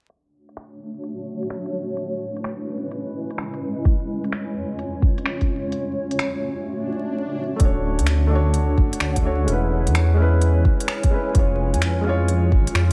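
A dusky, vinyl-crackled future garage excerpt at 128 BPM with a swung 16th feel, melancholic and nocturnal, opens on crisp, overdriven hats and finger snaps under a filter sweep as a blurred granular cloud pad pumps through Dmaj7, E6, C#/E#, F#m, a soft overdriven kick arrives at 3.9 seconds, and after an electronic swell the second section at 7.6 seconds brings a felt-muted upright piano with digital delay and a deep, rumbling detuned saw bass sitting up front.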